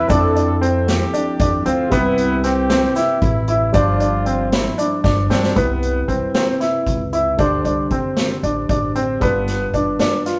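A straight 7/8 pulse at 230 BPM in eighths underpins this bright, intricate progressive band piece in C major, cut from a longer work, as a distant, roomy drum kit with a boomy kick pushes through a drum fill at 5.0 seconds into a second section moving from Cmaj7 through D7sus4 to G7. A worn, up-front baby grand piano spins long-sustaining arpeggios beside a barky, clean tine electric piano and a woody, thumpy pizzicato upright bass, while a close-miked flugelhorn with jazz vibrato carries a warm second line and a grainy, very quiet tube shaker plays until 5.4 seconds. The sound is that of a rough rehearsal room with moderate stone-room reverb and a dull, rolled-off top end.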